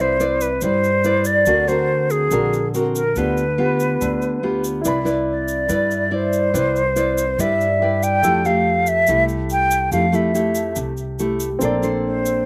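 An airy, hollow concert flute with vibrato and a crisp attack carries the melody up front in this sophisticated, romantic bossa nova excerpt at 142 BPM in C major, while a fingerpicked nylon-string guitar with audible finger squeak and a deep classical tone supports it through chords such as Cmaj9, Daug7 and Fmaj9. A woody, thumpy pizzicato upright bass anchors the low end, a grainy, bright tube shaker adds a compressed, saturated pulse, and a warm concert grand piano enters in the background at 4.8 seconds. The flute, guitar and piano each carry a slapback echo, and the whole sound is dry and open, as if played outdoors.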